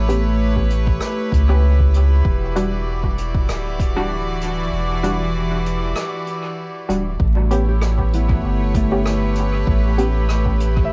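Ambient dub at 97 BPM with a light 16th-note swing, spacious and deep, this short section rests on reedy, gut-string chamber strings holding sustained chords over A7 and Em7 while a round, up-front sub bass and an overdriven electronic kick, re-recorded in a large room, anchor the low end. Muted, detuned sawtooth chord stabs with lush chorus and dub echo float above distant, roomy brushed hi-hat and rim clicks, and the kick drops out from 4.7 to 7.2 seconds. At 7.7 seconds a thumb-plucked concert harp enters with ringing arpeggios in the background, all beneath light reverb and a layer of vinyl crackle.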